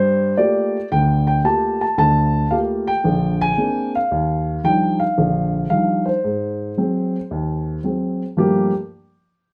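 Swung eighths in 4/4 carry this cool, moody jazz excerpt, where a solo baby grand piano, dark and mellow with its action noise audible, plays alone until 8.7 seconds through Gm9, Bb9, Ebmaj9 and Ab7 chords, set intimate and up front within a wet studio reverb.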